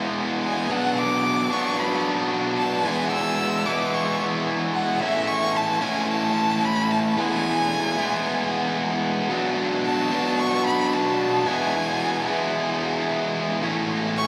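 A straight 4/4 pulse at 111 BPM drives this brooding, cathartic rock fragment, cut from a longer piece and tuned slightly below standard pitch at A4 = 438 Hz. A double-tracked, overdriven electric guitar opens at 0.0 seconds with a bright, picked riff that sits up front, ranging from A2 to E4. The chords shift through E, Bm, A and Bm7. At 0.4 seconds a single bowed violin enters high above it, between E5 and E6, singing a focused, vibrato-laden melody carried by tape echo. The whole mix is soaked in a huge ambient reverb with a long 8.5-second tail, giving it a dreamy, cavernous quality, while a faint mains hum lingers underneath until both parts stop at 14.3 seconds.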